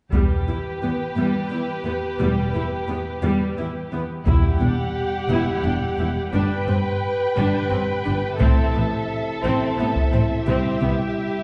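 This cinematic, epic orchestral film score moves in a slow 6/8 with a dark, heroic mood, and it is cut from a longer piece. A violin section carries the melody with a dark, expressive tone, vibrato and portamento, while a second, rich-sounding violin section holds a line beneath it and clear, focused violas fill in the accompaniment. Underneath, close and even cellos join soft-attack double basses on the bass, and heavy-stick taiko drums, the loudest part, drive the passage until 10.3 s. At 4.3 s a build-up begins as a mellow, vintage-sounding French horn section enters with sustained chords and round, soft-mallet timpani strike until 5.3 s. The harmony moves from E minor through Emadd9, G and A minor to C, and a wet scoring-stage reverb sets the ensemble further back in the room with a softened top end.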